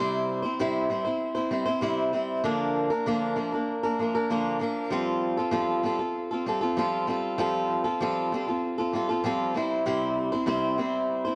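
Rock at 97 BPM in straight 4/4 and F major (tuned to A4 = 435 Hz), this jangly, nostalgic 11.3-second excerpt features a lone picked swing-style acoustic guitar, boxy and up front with a touch of tape echo, moving through C, Bb/D, Fadd9 and back to C in a dry, close 1970s-style studio sound with small room ambience.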